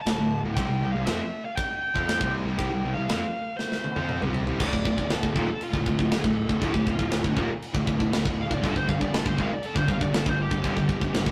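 Relentless and heavy, this heavy metal excerpt drives at 119 BPM in D minor, with a dark, high-gain lead guitar carrying the melody over a scooped high-gain rhythm guitar, a very quiet tight distorted guitar and a growly fuzz bass, all pushed along by an up-front metal drum kit with a tight kick and medium-tuned snare. A drum fill at 3.6 seconds leads into a lead guitar solo from 4.6 seconds, where a double-tracked overdriven guitar joins the riffing in the background. The whole take has the rough feel of a rehearsal room, with tube saturation and a moderate stone-room reverb.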